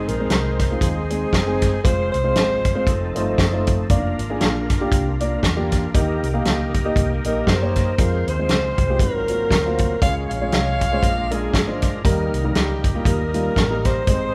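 A breathy alto saxophone opens this jubilant, hopeful gospel excerpt over a woody upright piano with audible action noise, a gritty overdriven tonewheel organ holding thick chords through a slow rotary speaker and chorus vibrato, and a round, punchy hollow-body electric bass, while a dry soul drum kit with a fat snare and tight kick sits up front in a swung 4/4. The saxophone breaks off at 3.1 seconds and returns at 7.3 seconds with a pop-style vibrato. A moderate recital-hall reverb gives the whole band a churchlike space.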